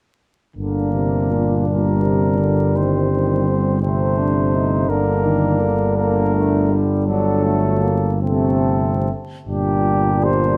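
The recording sits in a moderate recital hall reverb, captured with close, detailed microphones and overlaid with vinyl crackle. It is a short cut from a longer classical, hymn-like piece for brass band in G minor, moving in a slow, rubato 6/8 at around 45-57 BPM to the dotted quarter, with a melancholic, solemn mood. A mellow, soft-attacked cornet carries the melody, while a close-miked flugelhorn sits in the background with a second line. Beneath them, a euphonium and a tight trombone section, the latter distant and roomy with light vibrato, supply warm accompaniment. Up front, a dark tuba with a smooth top and light vibrato holds a low G as the bass. All five parts sound together from 0.6 s to 10.6 s, the harmony moving from Gm through Am7b5/G, back to Gm and on to D7/G before returning to Gm as a new section begins at 9.5 s.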